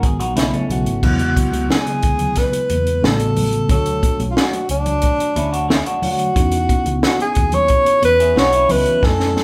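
Silky and bittersweet, this lush 1970s-style soul excerpt moves at an unhurried 90 BPM in a straight 4/4, set in C# phrygian. A breathy tenor saxophone carries the melody up front, its subtone sound marked by soft attacks, scooped notes and a light jazz vibrato. Beneath it, a mellow tine electric piano lays down clean chords, while a dark, foam-muted fingered bass gives a round, punchy low end. A compact cocktail drum kit sits up front and dry with dusky cymbals, a high-tuned snare and a firm kick, joined by very quiet, thick-skinned congas. A twangy, slightly broken-up electric guitar through a small old amp picks a lo-fi riff in the opening second, returns at 5.4 seconds, and drops out before a drum fill at 9.0 seconds. The band plays live in one room with moderate large studio reverb, moving through rich chords such as E69, A13, Dmaj7 and C#m11.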